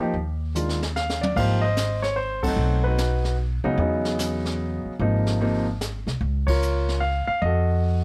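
A swinging 3/4 jazz waltz at 148 BPM, this sophisticated piano trio fragment sets an intimate grand piano with audible action noise and long sustain carrying the melody over a woody pizzicato upright bass, while a small-room brush kit with dark cymbals, a high-tuned snare and a boomy kick plays a fill from 0.6 to 1.4 seconds before band accents land at 2.4 and 6.4 seconds, all under light reverb as the chords move from Ebmaj7sus2 through B7b9 to F7b9.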